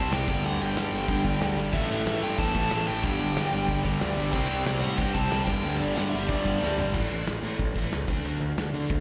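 Driving straight 4/4 at 184 BPM, this upbeat, energetic punk rock excerpt opens with a biting, overdriven lead guitar melody carrying slapback echo and delay over a growly fuzz bass, a loose acoustic drum kit with dark cymbals and a punchy kick up front, a crunchy guitar riff in the background, a compressed distorted guitar and a very quiet double-tracked cranked stack guitar, all heard like a live gig through the venue's PA in a recital hall, until a drum fill at 6.6 seconds leads into a new section where, from about 6.9 seconds, only the crunchy guitar, bass and drums continue to 9.0 seconds.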